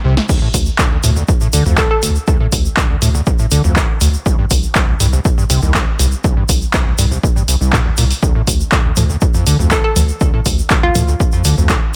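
A gritty, raw acid house cut at 121 BPM in straight 4/4, rooted in D minor, opens on a drum fill before a punchy, tape-warm electronic kick settles in up front at 0.3 seconds alongside a punchy analog drum machine of congas, crash, handclaps, hi-hat and snare, with a short room around the snare, claps and hats. A grainy, bright tube shaker adds compressed, saturated texture on top. Carrying the riff from the very start, an overdriven acid bass squelches through a resonant square-wave filter sweep, treated with analog chorus, tape echo and sidechain pumping, while a round, deep analog bass sits beneath it with tube saturation and the same pumping. A hollow, bouncy square pluck with a detuned, ring-modulated edge flickers in briefly near 1.8 seconds, then returns at 9.7 seconds with chorus and digital delay, just after the harmony lands on D minor at 8.2 seconds. The mix is dry and close, with little reverb, and this fragment is cut from a longer piece.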